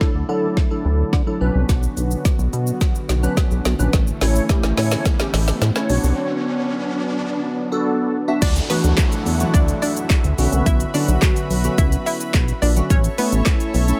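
A chorused synth bass sits up front in this summery, upbeat dance-pop excerpt, its dark, glossy tone carrying a retro edge and pumping against the kick as it moves between A1 and D3. The deep house drum kit is just as forward, with a deep kick, woody snare, smooth hats, handclaps, shaker and crash cymbal, and a drum fill running through the first six seconds of the build-up. Glassy, airy digital keys and a mellow, detuned sawtooth pad fill out the accompaniment in D major at 107 BPM. Both parts are chorused and sidechain-pumped over chords that move from Dadd9 to Bmadd9 and A. A background riser enters at 2.4 seconds and leads through a short break into the drop at 8.4 seconds. At the drop, a round, bright analog pluck takes the melody, colored by chorus and delay, and a light reverb gives the whole mix a bit of space.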